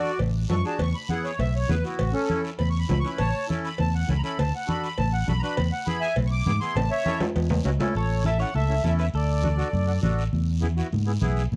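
A straight 4/4 cumbia groove sets a joyful, danceable latin mood, built on a round, dark fingered electric bass up front, low-tuned ringing congas in the background, a raspy guiro, and vintage metal-shell cowbell and timbales. A sweet, reedy accordion with light tremolo tuning carries the melody as a solo from 0.0 to 8.0 seconds over a second accordion's slow-beating accompaniment, while a drum fill arrives at 6.8 seconds. At 8.0 seconds a clean, compressed electric guitar picks out a short second line, all captured in a dry, close 1970s-style studio sound with small room ambience.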